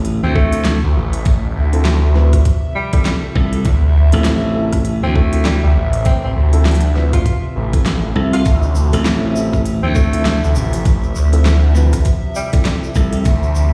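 Glitch hop with a gritty, funky swing, built on a thick, swirling phased saw bass and a growly, punchy slap bass up front, a knocking electronic kick (dropping out from 7.9 to 8.5 seconds) with a fat-snared pop kit, a distant, subtoned tenor saxophone carrying the melody through digital delay, background electric piano stabs roughened by 12-bit sampler grit, a warbling, nostalgic tape-like pad on sustained chords, and a grainy egg shaker entering at 8.5 seconds, all set in a stone room with vinyl crackle.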